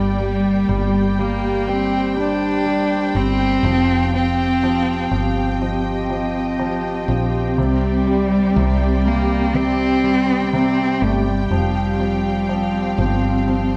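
In a straight, unhurried 4/4, this slow pop ballad fragment moves through Gm, Fsus2 and Csus2 with an emotional, heartfelt mood across its 13.8 seconds. A dark, boxy solo cello carries the melody up front, bowed smoothly and evenly with vibrato. Beneath it, a clear, polished concert grand piano plays intimate accompaniment with deep bass, long sustain and audible action noise. A warm studio string section holds sustained chords close and up front, bowed sul tasto with soft attacks, vibrato and a smooth top. A growly, round fretless electric bass, direct and amped with a woody, hollow-body tone, anchors the low end. The band plays live in one room, wrapped in a moderate large-studio reverb.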